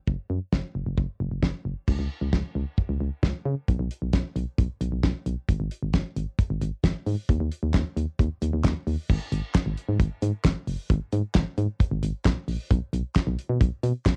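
Nocturnal and driving, this synth-pop excerpt moves at 133 BPM in a straight 4/4 in G# minor, tuned slightly low at A4 = 439 Hz. A damped 70s drum kit of kick, snare, hi-hat, crash cymbal and handclaps plays from 0.1 to 14.2 seconds, sitting up front with a dry, dark, smooth character, a fat snare, a tight kick and a rolled-off top, colored by cassette tape. A solid FM bass runs the same span, ranging from F#1 to C#3, punchy and round with a digital fast attack that decays, also placed up front. The arrangement shifts through three sections, changing at 1.9 and 9.1 seconds before the cut at 14.2 seconds. Light reverb and a home cassette recording give the whole a late-night feel.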